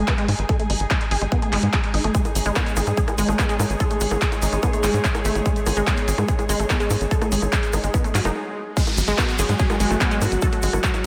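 A tight, nasal sequencer bass drives this hypnotic psychedelic trance excerpt alongside a punchy, up-front electronic kick, while a bright, detuned unison pluck riff with ring modulation and analog delay pumps against the beat, with a layered dance kit of bongos, handclaps, hi-hat and crash underneath. Muted, veiled con sordino strings fade in from the distance, and from 2.4 seconds an evolving, warbling vintage pad with chorus joins a grainy egg shaker. After a swell and a brief stop, the drop lands at 8.8 seconds with a downlifter, all of it soaked in a dreamy hall reverb.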